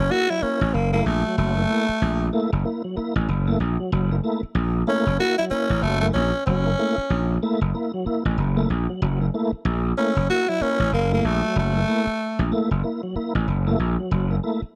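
A gritty, energetic funk excerpt with a swung sixteenth-note feel, where a raspy, growling tenor saxophone carries the melody until 12.5 seconds over an overdriven, punchy slap bass and lightly overdriven tonewheel organ stabs colored by chorus vibrato and a slow rotary speaker, all sitting up front in a dry, close small-room sound that holds on a single dominant chord.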